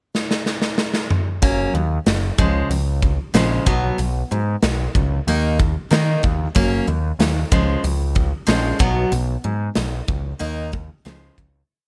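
A big, roomy rock drum kit opens with a fill through the pickup bar before this short, cathartic and restless quiet-loud alternative rock piece settles into its verse at 1.4 seconds. A bright, full-bodied steel-string acoustic guitar plays palm-muted eighth-note arpeggios, while a growling, overdriven electric bass drives eighth notes beneath a punchy kick and a medium-tuned snare, all sitting up front in a dry sound. The chords move between F#, C#, B5 and D#5, and the whole piece fades out from 9.1 seconds.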